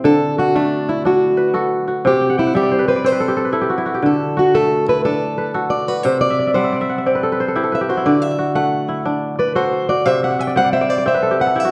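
West African traditional string and xylophone music, flowing and joyful, moves at 120 BPM in a straight 12/8 in D mixolydian, rocking between D and C chords across this short excerpt cut from a longer piece. A ringing, crisp kora plays arpeggios up front throughout, adding fills around 2.2, 6.3 and 10.2 seconds, while a dark, boxy fingerpicked plugged-in steel-string acoustic guitar with slapback echo carries the melody as a solo from the start. A wet recital hall reverb surrounds the pair.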